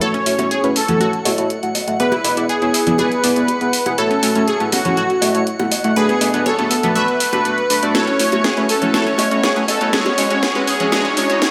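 A glossy, retro chorused polysynth sits up front with sustained stabs blending pulse, sawtooth and triangle tones over a sub octave, its filter sweeping throughout this emotional, expansive progressive house build-up at 121 BPM in F# minor. A smooth, detuned supersaw carries a soft-attack melody with cassette tape character and tape echo. A lush, bright unison pluck spins punchy, decaying arpeggios through a phaser and tape echo. The chords move from F#m7 through E7 and Bm7 before landing on E. The house drum kit brings a layered, tape-warm groove with a cracking snare and hi-hat, while distant bongos, congas and cowbell sit in the background. A calm, glassy texture of drifting sine overtones enters at 0.7 seconds, a drum fill begins at 7.9 seconds, and a very quiet riser comes in at 9.8 seconds, all within a moderate scoring-stage reverb.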